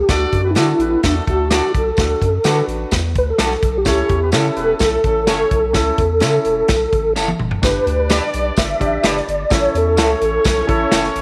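A straight 4/4 groove at 127 BPM drives this uptempo 1960s-style soul excerpt in D major, carried by a swinging big-band drum kit with a punchy kick, a medium-tuned snare, hi-hat and toms, placed up front in an airy, polished studio room. A round analog bass with a deep, nasal tone anchors the low end from the start, while a jingly, vintage tambourine sits in the background. The mellow tonewheel organ takes the melody with a flute-like voice, key click, chorus vibrato and a fast rotary speaker, as a clear horn section in tight octave doubling plays a second line with light vibrato and a smooth top. An intimate grand piano with audible action noise fills in the accompaniment, and from 0.6 seconds an electric guitar through a small old amp adds slightly broken-up, lo-fi stabs. The harmony moves from D to A, then a drum fill at 7.2 seconds leads into a new section on G and A, the whole joyful, warm band sitting in light reverb.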